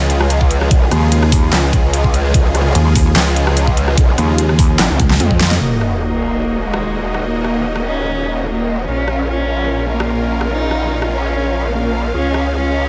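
A half-time 4/4 groove drives this menacing, heavy wobble dubstep, built on an up-front, overdriven dubstep drum kit with a huge snare, handclaps, hi-hat, rim click and toms, plus a knocking electronic kick that stops at 5.4 seconds. A growling, distorted growl bass and a pulsing, saturated pluck wobble bass sit beneath bright, airy supersaw chords with sidechain pumping, and a drum fill leads into an impact at 5.6 seconds. There a sub drop lands and a dark, expressive bowed cello with vibrato, portamento and digital delay takes the melody.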